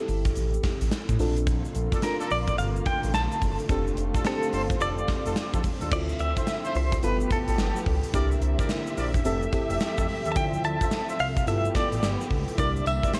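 A twangy, compressed clean electric guitar carries the melody with tremolo and delay from 2.0 seconds in this slick, confident new jack swing excerpt, riding over a punchy, gated drum kit with tambourine and crash, a smooth saturated synth bass, a lush, warbling FM electric piano with a soft pad layer, a grainy tube shaker tucked in the background, veiled muted strings holding dark sustained chords, and tight jazz-style horn stabs, all with a swung groove and dark, warm small-room production.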